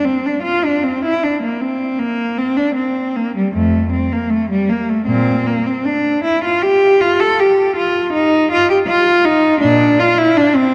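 A lone bowed cello opens the recording at 0.0 seconds and carries it alone to its close at 10.7 seconds, in a classical, baroque-style suite movement for unaccompanied cello. The mood is solemn and flowing, set in F major at 78 BPM in 4/4, with a rubato feel that lets the phrasing breathe. The single player sits up front with a focused, warm tone, a smooth top end and vibrato, ranging from F2 up to A4. A wet church reverb surrounds the instrument, and the overall production leans dark. This short passage is cut from a longer piece.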